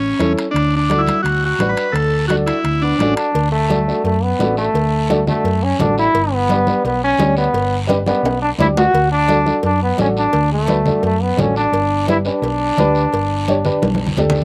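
Latin cumbia, sunny and joyful, in a brief cut from a longer piece. A buzzy, vintage combo organ carries the opening melody up front, colored by phaser and slapback echo, before stopping at 3.1 seconds. Beneath it, a dark, round hollow-body short-scale electric bass sits up front throughout, and a woody upright piano with slapback echo fills in the accompaniment. The percussion blends hard-handed, thin-skinned congas, a raspy, band-limited guiro, and ringing metal-shell timbales and cowbell with slapback echo tucked in the background. A bright, roomy trombone enters as a second line and takes a pop-style solo from 3.3 seconds, with a drum fill at 7.9 seconds as the chords move between D and G.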